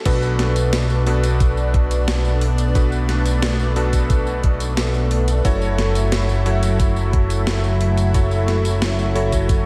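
Bright electric grand piano stabs, a fat analog bass, an electronic kick and a gated 80s digital drum machine all begin together at 0.1 s in this driving, moody synthwave passage, cut from a longer piece. It moves at 89 BPM in a straight 4/4 in B minor, with a lush unison pad entering at 0.3 s to hold sustained chords, its detuned sawtooth and square tones treated with chorus, phaser and sidechain pumping. The piano has a cutting, clangy, vintage character with chorused unisons and long sustain, trailed by a diffuse ambient delay. Up front, the thick, detuned bass sits low with a fast attack and a filter sweep with a moving notch. The thumpy, tape-warm kick is the loudest part, while the drum machine adds crash cymbal, hi-hat, tambourine and a gated-reverb snare. The harmony moves from Bm7 to F#m7 at 5.4 s, all under a light reverb.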